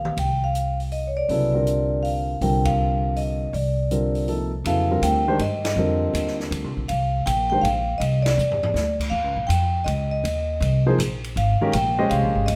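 Modal jazz in 3/4 at 161 BPM, swung on the eighth notes, this passage cut from a longer piece has a searching, cool mood, opening over C7sus2 and settling into F minor at 4.7 s. A vibraphone played with medium hard mallets and the motor off carries the melody with a metallic, ringing tone, sitting slightly forward. A woody pizzicato upright bass on steel strings anchors the low end up front, while an acoustic jazz kit with dark cymbals, a medium-tuned snare and a boomy kick stays further back, opening with a fill and adding another before the harmony moves to Eb13sus4. A warm grand piano enters at 1.3 s as accompaniment, drops out at 7.6 s and returns near the close. The band hits shared accents and pauses for a short break just before the shift to F13sus4, all set in a moderate large-studio reverb that lends a roomy sheen.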